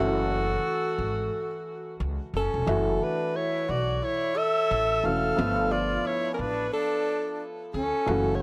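A dry, gritty recording with a modest small-room reverb frames this cool, nocturnal jazz-hop fragment, cut from a longer piece and set to a swung 4/4 hip hop groove. Up front, a breathy alto saxophone carries the melody with light vibrato, subtone and scooped notes, trailed by tape echo, while a distant, hollow flute plays a soft-attack second line beneath it. A dark, vintage upright piano and a thumpy, woody pizzicato upright bass form the accompaniment as the harmony moves from F#m7 to G9 at 5.4 seconds.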